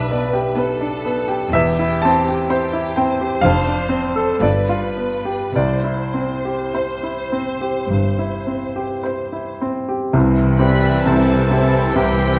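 A clear, up-front baby grand piano carries the melody of this brooding, passionate classical piece in C major, played rubato at 50-67 BPM over a lush violin section's second line, a bright cello section and a focused double bass section, with a very quiet viola section joining at 0.6 s; at 10.1 s a mellow French horn section's sustained chords open a fuller passage in which clarinet, bassoon and tuba add quiet support, another violin section takes up a high melody, and a hollow flute and smooth-topped oboe trace second lines, heard in a moderate recital hall reverb.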